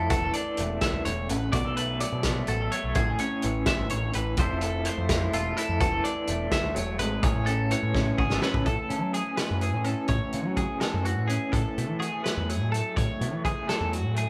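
This is a playful, bright math rock and midwest emo excerpt in 6/8, moving at 84 BPM in dotted quarters in A major, with the band playing live together in one large studio room with moderate reverb. A slightly broken-up, lo-fi electric guitar through a small old amp carries the accompaniment with tremolo, a twangy, compressed twelve-string electric guitar spins clean arpeggios high above, and a growling picked bass adds overdriven grit beneath chords such as Amaj7, Fmaj7 and E7sus4. A loose, saturated indie drum kit with a punchy kick, medium-tuned snare and rolled-off top sits up front, and its fill from 7.9 to 8.7 seconds leads into a new section where the harmony settles on A6 and F#m9.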